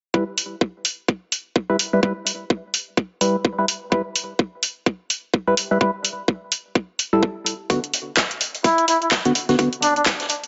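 The mix sits in a small studio space with light reverb and a soft, rounded top end, giving this short bass house cut a bouncy, swaggering feel with a gentle swing on the sixteenths. A tight, up-front electronic kick anchors the groove from the start, joined almost at once by a layered, tape-tinged house kit of handclaps and hi-hat that sounds re-recorded in a small room. A hollow, wave-folded organ stab carries the harmony over an E minor chord, its fast attack and quick decay colored by chorus, phaser, digital delay and a pumping sidechain motion. At 7.7 seconds the harmony shifts to B minor as a gritty, saturated acoustic kit of hi-hat and medium-tuned snare slips in behind the others, dulled and kept in the background. Near the close, at 8.6 seconds, a veiled cup-muted trumpet steps forward with a brief solo phrase, soft-edged and touched with light vibrato and digital delay, sounding distant and roomy despite sitting up front.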